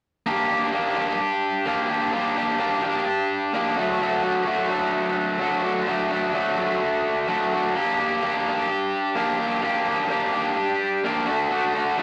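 Rock in G minor at 128 BPM, this moody, cool fragment of a longer piece features a lone raw garage electric guitar, bright, overdriven, picked and double-tracked, playing up front from 0.3 to 12.0 seconds over alternating Gm and D chords, with cassette tape grit and a moderate spring reverb giving it the feel of a home recording on cassette.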